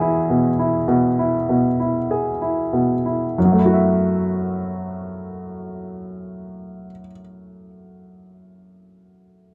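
This classical fragment, cut from a longer piece, carries a fragile, longing mood at a slow, rubato pace of about 47-53 BPM in 4/4 and F# minor. A clear baby grand piano plays alone throughout, from 0.0 to 9.5 seconds, spanning E2 to E5 in an accompanying role. Its tone is natural and up front, with a short sustain. The opening passage rests on an E chord and slows down until 3.4 seconds, when the harmony moves to F#m7 and a new section begins. The sound is dry and close, in a 1970s-style studio setting touched by light reverb.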